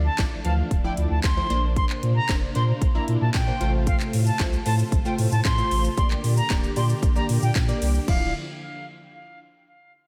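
A funky, detuned polysynth comp, lush vintage string-machine chords in the background and a thick, saturated sub bass open this bittersweet, energetic 114 BPM dance-pop excerpt in D minor, each pumping to the sidechain. A bright, reedy flute melody with vibrato and delay joins at 0.1 s, and a house drum kit with a punchy kick, cracking snare and metallic hats sits up front from 0.2 s, all moving over Dmadd9, Bbadd9, F/A and Gm in light reverb.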